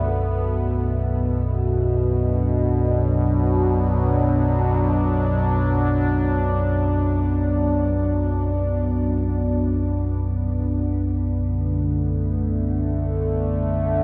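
Floating in free time, this ominous, dark ambient fragment sets a deep, rumbling drone of triangle and sawtooth tones, thickened by ensemble chorus, beneath an evolving, wave-folded pad whose resonant filter swells sustain chords through chorus, phaser and shimmer reverb, while a pure, ringing quartz singing bowl with a felt-mallet tone hovers barely audible inside a huge, dreamy reverb with an 8.8-second tail.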